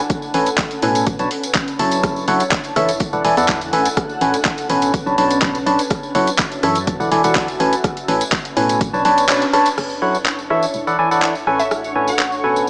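This is an energetic, soulful piano house excerpt at 124 BPM in a straight 4/4, built on a looping progression of lush ninth and suspended chords. A nasal, hollow organ stab drives the riff up front with chorus and tape echo, while a dark, organ-like FM bass and a cloudy, evolving granular pad sit beneath it, all three pumping against the beat. The overdriven analog kick punches through alongside a layered garage kit of bright hi-hats, handclaps, rim clicks and crash cymbal, with a close acoustic tambourine adding extra shimmer. After a band accent at 9.3 seconds, where the kick drops out, a silky, detuned string pad enters in the background at 9.8 seconds, carrying ensemble chorus and phaser. A crystalline wavetable pluck adds a brief glassy melodic figure at 11.6 seconds, and the whole mix sits in a moderate hall reverb with a small-speaker character.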